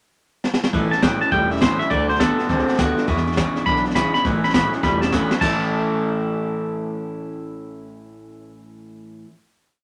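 Rockabilly at a rollicking, upbeat 205 BPM in 4/4, swung on the eighths and set in A major, this short complete piece moves through A, D and E7 before landing back on A. A jazz brush drum kit opens with a fill at 0.4 seconds and drives a train beat groove up front, with dark cymbals, a high-tuned snare and a boomy kick, then drops out at 5.5 seconds after a second fill leads into the final chord. The twangy electric guitar carries the melody with a bright, clean, lick-based theme that returns, while a second electric guitar through a small old amp, slightly broken-up and lo-fi, pumps a boogie figure on root, fifth, sixth and seventh. A full-bodied steel-string acoustic dreadnought strums eighths in open chord shapes, and a woody pizzicato upright bass sits in the background with a two-beat root and fifth line and walk-ups. The remaining parts ring on through the closing chord to about 9.3 seconds in a moderate studio ambience.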